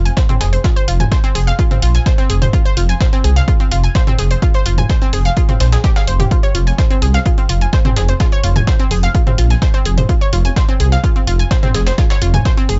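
A menacing, detuned saw bass pumps under an up-front punchy analog kick in this dark, driving melodic techno excerpt in F minor at 127 BPM, with round chorused pluck arpeggios through analog delay, a tape-warm deep house kit of hi-hats and toms, and a gritty, pitched-up breakbeat hat and snare layer in the background, all dry and hardware-rough.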